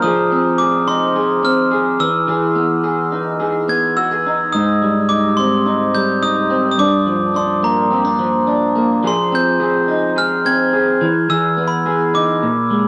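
A ringing, bell-like glockenspiel struck with brass mallets carries the melody from the first moment, alongside a twangy, slightly broken-up electric guitar through a small old amp that picks out the accompaniment, both up front with a subtle chorus and the guitar adding a vibrato effect. This sunny, hazy indie pop cut moves at 107 BPM in straight 4/4, drifting through Fm7, Emaj7, Abmaj7 and Gm7 chords. The dark production sits in a moderate studio ambience, and the band-limited, vintage character of the glockenspiel adds to the haze over its roughly 13 seconds.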